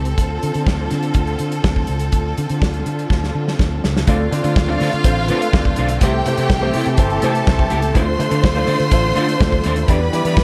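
Disco at 124 BPM in D dorian, glamorous and driving, opening with smooth, lush studio strings holding chords in the background over a round, punchy fingered bass and an up-front soul drum kit with a tight kick and gated reverb, whose fill at 3.1 seconds leads at 4.1 seconds into a fuller passage where biting symphonic strings carry a second line above an open concert grand piano and a clean, hollow-bodied semi-hollow guitar with subtle chorus, all moving through Dm7, C6 and Em7 with light reverb in a piece cut from a longer whole.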